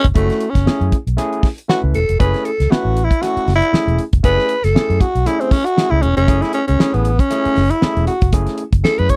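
A dry, close 1970s-style studio sound frames this driving, funky excerpt in F# minor at 117 BPM, swung on the sixteenths over a single F#m9 chord. A growling tenor saxophone solos from the start, breathy and raspy with vibrato, subtone and scooped notes, over a round, foam-muted fingered electric bass and a damped 70s drum kit with a fat snare and tight kick, all three up front. Barky, gritty tine electric piano stabs played through a combo amp sit lower in the mix, entering at 0.1 seconds.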